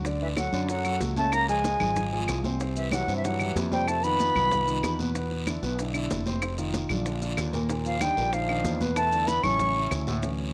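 A breathy, reedy silver concert flute carries the melody up front, its tongued notes colored by vibrato as it plays from 0.2 to 5.0 seconds and returns at 7.9 seconds, with a clear, punchy trombone adding a forceful second line in the same spans. This lively, danceable Afro-Cuban jazz excerpt moves at 189 BPM in a straight 4/4, cut from a longer piece. A dark, mellow concert grand piano with deep bass supplies the accompaniment, while a fretless electric bass sits up front with a direct, amped tone. The percussion bed gathers ringing high-tuned congas struck with hard hands, round low-tuned bongos kept very quiet, woody claves, a raspy guiro heard in a live room, and grainy maracas, most of them close and set in the background. The harmony drifts through Dmaj7, C#, C and Ebmaj9 before settling on A, all held in light reverb and a small-room ambience.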